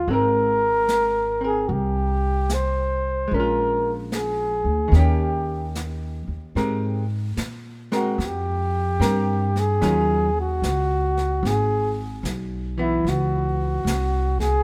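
Jazz ballad with a romantic, late-night swing, where a breathy flugelhorn with scooped notes and light vibrato carries the up-front melody and moves into an intimate solo at 6.6 s, over dark, clean picked chords from a hollow-body archtop guitar, a woody pizzicato upright bass and an airy brushed drum kit with a boomy kick, in light reverb.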